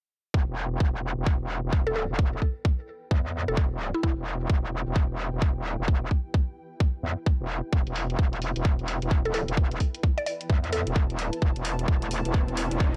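A swung 130 BPM bass house groove in E minor drives this aggressive, swaggering excerpt, where a tight, overdriven kick and a metallic, saturated wobble bass with chorus sit up front from 0.3 seconds, the bass pumping against the beat, a blurred granular cloud pad fades in behind them from 2.6 seconds, a woody, mallet-like synth pluck with tape-worn delay carries the melody in two short phrases, an overdriven, filtered hi-hat joins at 7.9 seconds, and an electronic riser builds in the background from 12.0 seconds in a dark, dry production.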